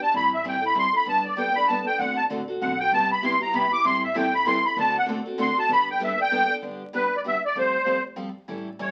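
A reedy, shimmering musette accordion carries the melody up front in this charming, swinging excerpt of acoustic string swing in G major, taking a solo through the first 6.6 seconds at 194 BPM in 3/4. Behind it, a bright, boxy parlour-style picked steel-string guitar accompanies throughout, joined by a second picked guitar with audible finger squeak from 2.9 to 6.4 seconds, while a woody, thumpy gut-string upright bass sits in the background. The whole is heard through a wet studio ambience and the crackle of a very old 78 rpm record, with chords moving from Am7 through D7 and Cmaj7 before settling on G and Fadd9.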